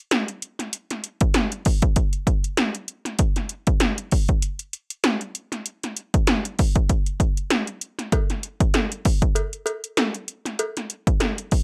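An up-front, analog, tape-warm kit of 80s electronic drums opens this hypnotic funk groove at 97 BPM in 4/4 with a 16th-note swing, its punchy kick, gated snare and metallic hi-hats sounding dry with little reverb, until a close acoustic cowbell with a metallic ring joins at 8.1 seconds for the final stretch of this fragment cut from a longer piece.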